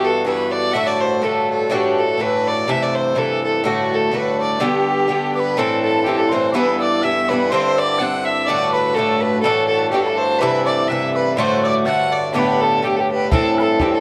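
A moderately reverberant studio sound frames this cheerful, bright Celtic polka excerpt at 124 BPM in 2/4 with a light swing: an earthy, distant-toned bowed fiddle carries the melody up front with tape echo beside a metallic, double-strung picked Irish bouzouki, a reedy, breathing pedal harmonium drones very quietly beneath, an airy, chiffy tin whistle with vibrato enters at 5.3 seconds on a background second line, and a tight, damped bodhran appears only at 13.3 seconds.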